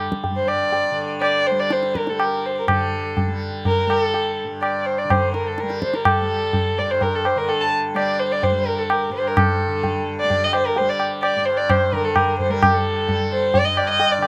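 This dry outdoor recording carries little reverb and places the tabla and violin up front. It is a solemn, introspective piece of Hindustani classical music in raga Darbari on G, set in 7/4 with a straight feel at 126 BPM, and the tempo quickens throughout. The softly plucked tanpura holds a buzzing, shimmering drone beneath everything, and the high-tuned tabla sounds close, with a short ring. A single bowed violin enters at 0.4 s, carrying the melody with a dark, woody tone and vibrato. After an opening passage, the music moves into a new section at 2.7 s, and this short cut from a longer piece ends at 14.3 s.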